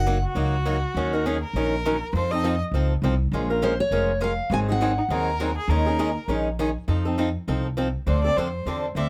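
Acoustic string swing in the jazz manouche style, swinging and virtuosic at 203 BPM, with a bright, boxy picked swing guitar and a woody, thumpy pizzicato upright bass on gut strings anchoring the accompaniment in light reverb, a picked steel-string guitar with fresh strings briefly carrying the melody from 3.6 seconds, and a rich, smooth bowed violin with vibrato singing a second line before a short solo at 8.1 seconds, all cut from a longer piece.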